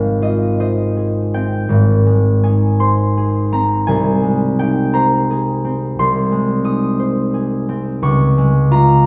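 Heard from further back in a wet recital hall, this graceful, serene classical excerpt features a solo concert harp, bright, thumb-plucked and ringing up front, spanning Ab1 to Eb6 in a rubato 6/8 as it moves from Fm/Ab through Ab and Ab/C to Bbm7/Db.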